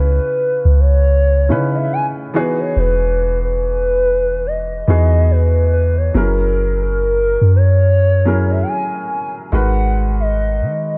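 Contemporary R&B at a slow 71 BPM with a sensual, longing mood and a swung sixteenth-note feel in C# dorian, tuned to A4 = 444 Hz. A mellow, gliding portamento lead carries the melody up front with vibrato, chorus and digital delay, over a natural-sounding baby grand piano moving through C#m7, Emaj7, F#7 and G#m7. A deep, round 808-style bass sits prominently beneath. The mix is dry and dark throughout this 11-second excerpt.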